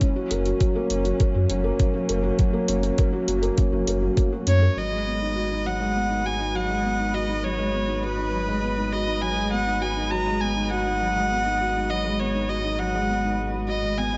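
Piano and strings electronica with a melancholic, intimate mood, built on a felt-muted upright piano riff whose soft, mellow tone carries audible action noise, tape echo and a filter sweep from 4.8 seconds, over sustained chords from a distant, woody string quartet and a deep, round sine sub bass, both pumping against the beat. A muffled, thumpy kick and an overdriven hi-hat drive only the opening stretch, dropping out by about 4.6 seconds, just as an up-front solo violin enters with a biting, earthy melody, light vibrato and its own tape echo. The whole excerpt sits in a moderate concert hall reverb with a dulled top end, and it is cut from a longer piece.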